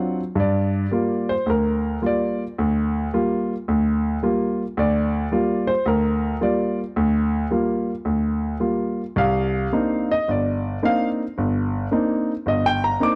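A swung, rubato pulse in 4/4 carries this moody, cool solo jazz excerpt, where a clear, intimate grand piano sits up front in a dry, close 1970s-style small-room sound with audible action noise, spanning G1 to D6 as the harmony moves from Gm7 to Cm9 at 9.2 seconds.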